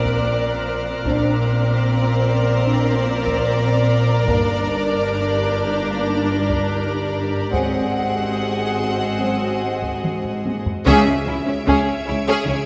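Bathed in a wet concert-hall reverb, this mysterious, tense suspense film-score excerpt sets lush, vibrato-rich violin sections on the melody and a second line over close viola accompaniment, an icy, crystalline glass pad with chorus, and a smooth bowed cello and double bass foundation, while hard-stick taiko drums sound throughout, mellow French horns hold background chords from 1.1 to 9.5 s, a faint, expressive high violin texture hovers at the opening and close, and after a drum fill a band accent at 10.9 s brings in a background cello riff and round, soft-mallet timpani.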